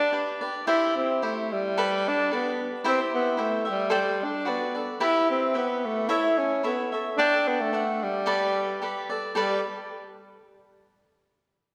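A clear tenor saxophone and a bright, crisp picked cavaquinho open together in a proud, festive mariachi excerpt in G major at 110 BPM in 2/4, the saxophone carrying a classical-style solo melody with vibrato over the cavaquinho's accompaniment, both placed up front. The harmony moves from G and C through D7sus4, Em and A before settling back on Gadd9 at 8.3 seconds, with a new section arriving at 9.4 seconds. A wet concert hall reverb sets the pair further back in the room, and the music is cut from a longer piece.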